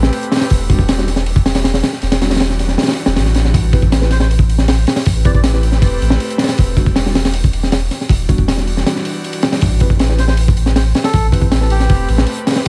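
A crunchy breakbeat kit sits up front in this dark, atmospheric drum and bass excerpt with a jungle edge. Its punchy kick, high-tuned snare and hi-hat sound saturated and gritty, with a rolled-off top in a studio room. Beneath it, a soft dub sub bass adds a deep, round low end with a fast attack and sustained notes, also placed forward. In the background, an airy, breathy pad holds Am9 and Em9 chords, colored by chorus and vintage 12-bit sampler texture, while a very quiet, mellow tine electric piano adds clean stabs. A reedy, nasal melodica carries the melody in two short phrases, first at 4.1 seconds and again from 10.2 seconds, trailed by dub echo, with a brief break at 8.9 seconds in the echo-heavy, nearly reverb-free mix.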